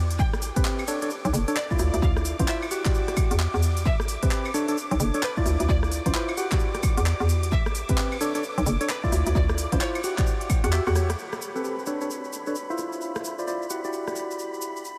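A hollow, bouncy FM bass sits up front beside a punchy, tape-warm electronic kick in this late-night, moody two-step garage excerpt with swung 16ths, while dark, wave-folded organ stabs with chorus, delay and a filter sweep ride over silky string-machine chords pumping under sidechain, a very quiet, vibrato-rich violin section carries the melody until 9.9 seconds, a layered garage kit of claves, handclaps, crisp hi-hats and rim clicks plays a fill into 11.2 seconds, and a grainy shaker sits in the background, within a dreamy mix soaked in long reverb.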